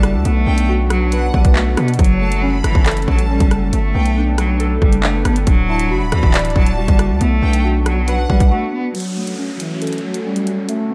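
A distorted, saturated 808-style bass sits up front beside a drill kit of hard-clipped kick, bright hats, handclaps and rim clicks in this dark, ominous half-time drill excerpt at 138 BPM in F# phrygian. A clear, focused cello carries the melody through a low-pass filter, with a rich studio violin section in tape echo above it, while warbly lo-fi synth keys with chorus and a nostalgic, mellow tape-like pad in the background move through Bm7, F#m, Gadd9 and Dadd9 within a digital ambience. The bass and violins stop at 8.5 seconds for a brief break, and from 8.9 seconds a downlifter and a filter sweep carry the closing bars.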